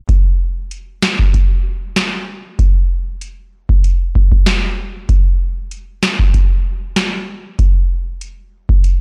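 A straight 4/4 dancehall beat from a booming analog drum machine runs from 0.1 to 9.0 seconds, its deep kick, crisp snare and metallic hi-hats sitting up front with vintage 12-bit sampler grit in a tough, hypnotic excerpt cut from a longer piece, captured dry in a blown-out, overdriven recording marked by a tape stop.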